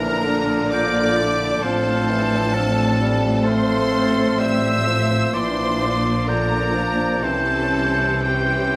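This serene excerpt of a slow, rubato romantic orchestral movement in F major at 56-67 BPM sets the violin section's rich, vibrato-laden melody among a second violin line with a smooth top, a pure metal-toned flute with a crisp attack, a clear oboe and a very quiet clarinet, while a mellow bassoon and an expressive viola section with portamento accompany, a dark, distant French horn section holds chords, and a lush cello section and smooth double bass section anchor the bass, all moving from Bb through F/A to a C(b9) at 7.2 seconds inside a recital hall reverb.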